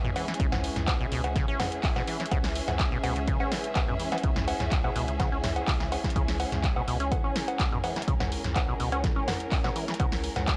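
Opening at once with a punchy analog drum machine of cowbell, handclaps, hi-hat, snare and toms set up front, a rubbery, resonant acid bass riff trailed by analog delay, a dark, bowed symphonic string section with vibrato, and a warbling, lo-fi tape-like pad holding a C#m7 chord in the background with chorus, 12-bit sampler grit and sidechain pumping, this trippy, gritty acid house excerpt at 125 BPM in C# dorian gains an electronic kick drum and a thick, tube-saturated sub bass at 0.4 s, heard through a dry, cassette-toned hardware recording.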